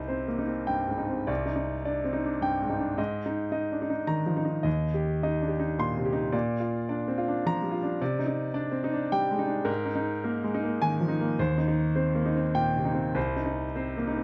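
A clear, up-front concert grand piano with deep bass and a smooth, vintage tone plays alone in this melancholic, intimate neoclassical minimalist excerpt in C minor, moving rubato in 3/4 at around 98-110 BPM through a cycling progression of Cmadd9, Absus2, Eb6 and Bb before settling back on Cm at 13.2 seconds, all set in a moderate studio reverb.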